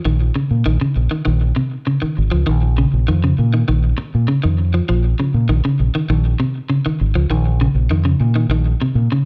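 A straight 4/4 pulse drives this defiant, funky afrobeat fragment, cut from a longer piece and resting on a single Bbmadd11 chord. A round, punchy fingered electric bass sits up front with a dark, direct, deep-dub weight, while a picked electric guitar on the edge of break-up plays arpeggios through a tape echo. Both parts run from the opening moment to about 9 seconds, set in light reverb.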